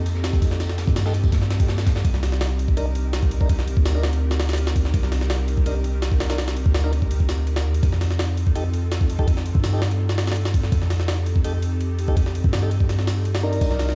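Nostalgic and dark, this short drum and bass cut from a longer jungle piece runs at 166 BPM in a straight 4/4, tuned slightly flat of standard pitch. A gritty, compressed sampler-style jungle kit sits up front with a thumpy kick, high-tuned snare, hi-hat and ride, pitched up and tape-warm under studio reverb, while a second breakbeat kit of hi-hat, snare and tambourine plays crunchy and saturated in the background, filtered dull, from 0.1 to 2.0 seconds and again near the end. Beneath them a deep, sine-like 808-style bass holds long decaying notes between C2 and G2, and an airy, breathy pad with a warbling, detuned vintage character sustains chords in chorus throughout. A reversed, granular texture swells dreamily on a single Eb4 at the very start, very quietly, and at 1.1 seconds a round, mellow tonewheel organ enters with stabs, its key click and vibrato turning through a slow rotary speaker and dub echo. 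The harmony moves from F7 to Cm7 at 2.0 seconds and back to F7 at 7.8 seconds, and the whole mix sounds like it is played on a big sound system in a bare stone room, dusted with vinyl crackle and muffled at the top.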